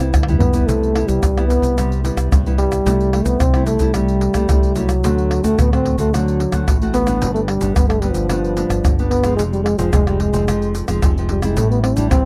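Samba and choro in a playful, joyful mood, this short cut from a longer piece features a dark, punchy trombone carrying the melody up front in a forceful jazz style, with light vibrato and a smooth top. A small, fingerpicked nylon-string guitar adds acoustic accompaniment with audible finger squeak, while a warm, direct electric bass anchors the low end and a close, dry kit of egg shaker, tight surdo, pandeiro and tamborim opens with a fill at 0.1 seconds. The sound is that of a dry, close 1970s-style studio with light reverb, moving through chords from Cmaj7 to D7, G and a darker Fm.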